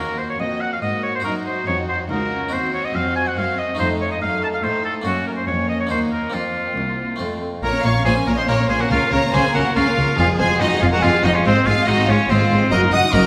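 A bright, up-front oboe shares the melody with a distant, smooth violin section in this stormy, driving baroque-style concerto movement in Bb minor at 142 BPM in 3/4, where a focused second violin line, viola and lush cello section join a plucked Flemish-style harpsichord in a wet concert hall, and the double bass section enters at 7.6 seconds as this short cut from a longer piece moves into its second section.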